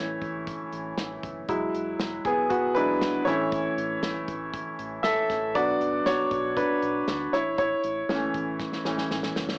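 A brilliant, up-front grand piano opens this uplifting, anthemic piano-driven pop excerpt in A major at 118 BPM, its long sustain coloured by cassette tape and plate reverb as it moves through A, Eadd9 and Bm, while a round, deep analog bass sits in the background. An airy acoustic drum kit joins at 0.2 seconds with a punchy kick, medium-tuned snare and hi-hat, also carrying a cassette tinge, and plays a fill from 8.6 seconds. The whole has a moderate studio reverb and the small-speaker character of a home cassette recording.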